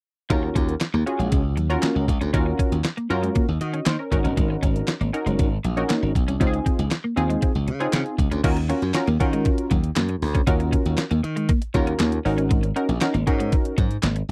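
Danceable and slick, this early-eighties boogie funk excerpt moves at 118 BPM in Eb dorian, built on a detuned 8-bit digital drum machine with a thumpy kick, medium-tuned snare, handclaps, hi-hat and crash, all overdriven and up front, alongside a glassy, bright slap bass. A punchy polysynth comp with a warbling, detuned sawtooth-and-pulse tone, plucky filter and chorus sits over an electric guitar riff at the edge of break-up, picked with a subtle chorus. The dry, close studio sound frames chords moving from Ebm9 through Ab9sus4 to Dbmaj9 before the second section returns to Ebm9 at 8.4 seconds.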